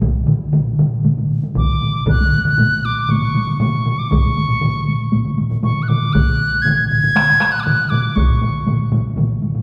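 Four layers of taiko ensemble struck with heavy sticks drive this powerful Japanese traditional piece at 118 BPM in a straight 4/4. Three layers sound compressed and saturated, while one carries the ambience of a small room. A pure, mellow piccolo with vibrato and a soft attack enters up front at 1.6 s, singing between C#6 and G#6 over the drums, and the whole fragment, cut from a longer work, rings in the reverberant space of a church or concert hall.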